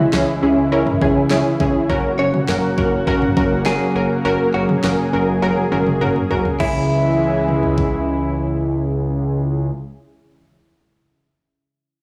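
Synth-pop at 102 BPM in C# dorian, this nocturnal, melancholic excerpt moves from C#m to F# and back, with a punchy, funky polysynth comp and a lush, warbling unison pad, both chorused and up front, riding over a fat, nasal analog bass and an electronic pop kit with a knocking kick, fat snare, toms and crash, which plays a fill from 5.4 to 6.6 seconds and stops at 7.9 seconds. A clean, direct-recorded electric guitar enters at 2.2 seconds with a picked, compressed second line through tape echo. The whole has a dry, gritty hardware sound with transformer saturation and light studio reverb.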